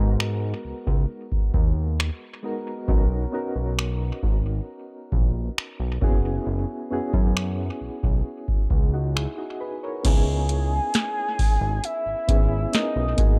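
Contemporary R&B at 67 BPM in a tender, dreamy mood, this short excerpt pairs round, gentle electric-piano-like synth keys with chorus, tremolo and analog delay over a fat, saturated analog bass and a dry, booming analog drum machine with a deep kick, tonal snare, metallic hi-hats, finger snaps and crash cymbal, moving from G#m7 to F#9sus4 before a dark, octave-layered synth lead with chorus, phaser and vibrato enters at 10.1 seconds over C#m9 in an echo-heavy mix with little reverb.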